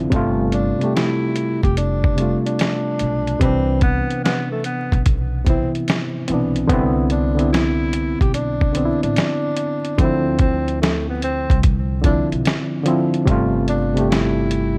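Dreamy and mellow, this lo-fi hip hop excerpt drifts at 73 BPM in C major with a lazy 16th-note swing, moving through lush ninth chords from G9sus4 to Cmaj9 and Dm9 under a bed of vinyl crackle and light small-room reverb. A reedy, up-front electric piano colored by cassette tape and a low-pass filter carries the harmony, while a woody, growly pizzicato upright bass and a gritty, compressed sampler-style drum kit with a thumpy kick and 12-bit crunch hold the groove. From 0.5 seconds a breathy tenor saxophone sings the melody in a whispered, intimate subtone with gentle vibrato, softened by a low-pass filter and trailed by analog delay.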